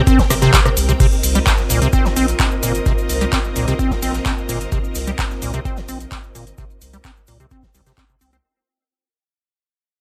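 A drop opens this raw, gritty acid house excerpt in C minor at 129 BPM, with a lush, vintage string machine holding sustained chords through its ensemble chorus and sidechain pumping. From 0.1 seconds a squelchy, resonant square-wave acid bass riff sits up front, overdriven and treated with analog chorus, delay and pumping, while a filter sweep works on it from 1.0 seconds onward. The drums stack an overdriven, deep electronic kick up front, a booming analog drum machine with metallic hats, handclaps, rim clicks and crash, a very quiet, dry reggae kit with a high-tuned snare, and a grainy cabasa in the background. A round sine sub bass pumps underneath from 0.3 seconds, and an airy, breathy pad with a noise layer and chorus drifts in at 1.3 seconds. The harmony moves from C7(no3) to Cm7 as the whole excerpt fades out, in a dry, close sound.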